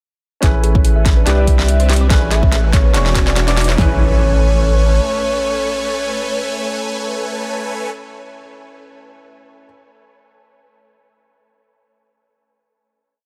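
Future bass in a lush, bright half-time feel: a short, complete piece that builds from 0.4 seconds with a drum fill and filter sweeps on the huge, detuned supersaw chords and the round, octave-layered synth lead, whose repeating riff melody carries chorus, vibrato and tape echo. Punchy kick, fat snare and metallic hat rolls drive the build alongside a deep, saturated sub bass following the chord rhythm, while a gentle, tine-like pluck traces a 16-step arpeggio and a natural-sounding grand piano holds rootless chords in the background, with all the melodic and bass parts pumping under sidechain. The drums drop out at 3.9 seconds and the music settles onto a final Amaj9 chord at 3.8 seconds, with a very quiet riser and impact passing through and the piano ringing on until 9.7 seconds in a digital ambience.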